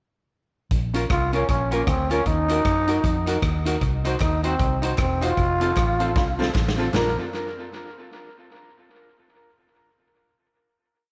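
Energetic, mischievous ska at 154 BPM with a swung feel in Bb harmonic minor: a big-room drum kit with a punchy kick and side-stick backbeat drives a foam-muted, dark walking electric bass full of slides and chromatic approach notes, while a hollow-body archtop guitar and a very quiet, woody upright piano both chop on the off-beats. Up front, a raspy, growling trombone carries the motif-based melody of call phrases with vibrato and scooped notes, and tape echo colours the trombone, guitar and drums inside a moderate echo-chamber reverb. Barely audible handclaps join at 4.2 s, a drum fill arrives at 6.2 s, and the short piece settles on a final Bb chord at 6.9 s.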